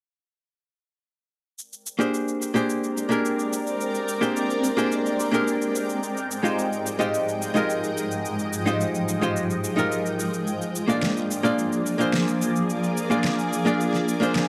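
In this relaxed, wistful sunset chillout excerpt, an overdriven electronic shaker and fat snare enter at 1.6 seconds, followed by a clean, picked hollow-body archtop guitar with delay sitting up front, then an ethereal, detuned pad with chorus, phaser and octave-up shimmer, all moving through Abmaj9#11, Fm9/Ab and Bb7 in a dark, plate-reverb-tinged production.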